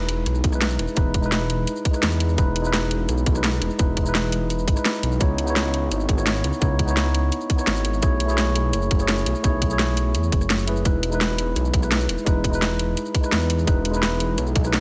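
A light reverb gives this lush, warm snippet of liquid drum and bass a soft glow, cut from a longer piece and running at 170 BPM in a straight 4/4 in E major. A mellow tine electric piano, clean and direct with a digital delay, carries the chords from the start, moving from Emaj7 to C#m9 at 5.2 seconds, then B13sus4 and back to Emaj7. Beneath it, a dark detuned saw bass rumbles deep in the low register, its detuned unison sawtooth voices beating, blended with a sine layer, with a fast attack and long sustain. The drum kit enters at 0.1 seconds with a cracking snare, bright hats, rim click and shaker, all overdriven and up front. An electronic kick, tight and overdriven, joins at 0.4 seconds and sits as the loudest part of the mix.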